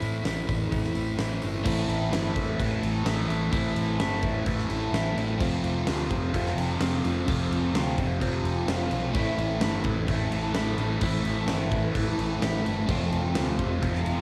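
This hazy, melancholic shoegaze and dream pop excerpt opens with four parts together. An up-front, huge arena drum kit brings bright cymbals, a fat snare and a punchy kick in a hall sound. A thick fuzz guitar plays a distorted riff with subtle chorus, over a dark, round, foam-muted electric bass. Behind them, an overdriven semi-hollow guitar plays its own riff, wrapped in reverse reverb. At 1.6 seconds a double-tracked overdriven electric guitar joins with another riff, tinted by phaser. The straight 4/4 rock pulse moves at 128 BPM in A minor, cycling from Am to F and back to Am before landing on F6 at 12.9 seconds. Cassette tape saturation colors the three guitars and the drums, while light reverb and a homemade cassette character give the recording a lo-fi, smudged glow.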